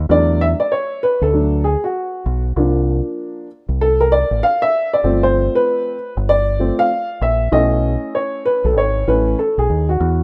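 A rough home demo sound with light reverb and a small-room ambience frames this short hip hop excerpt, cut from a longer piece. It moves at 97 BPM in 4/4 with a 62% swing on the sixteenths, and the mood feels both warm and cool. A deep dub fingered electric bass, round and amped, holds the low end from the start, moving between G1 and E2. From 0.1 seconds a dark upright piano takes a solo role through to the close at 10.2 seconds, its woody, mellow, vintage tone ranging from E3 to F5. The chords shift from E9sus4 to C9sus4, G9sus4 and B9sus4, and the piano sits up front beside the bass.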